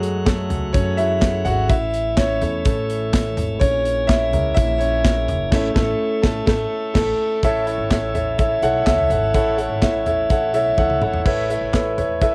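This piano-driven pop excerpt in A major moves at 126 BPM in a straight 4/4, with a hopeful, warm mood. A clear concert grand piano sits up front, with deep bass, long sustain and a smooth, vintage character, and it takes a solo through the opening 7.4 seconds. Beneath it, a tonewheel organ holds quiet sustained chords until 11.2 seconds, lightly overdriven with key click and a stopped rotary speaker that give it a piping, scooped tone. Pizzicato upright bass on steel strings adds a woody, growly low end, while a polished modern drum kit sounds airy in a small room, with tight kick, medium-tuned snare, bright cymbals, hi-hat, toms and handclaps. The band hits an accent near the end of the piano solo, and a drum fill at 10.8 seconds leads into a brief closing passage on an Aadd9 chord. Light reverb and the home cassette recording lend the whole a homespun sheen.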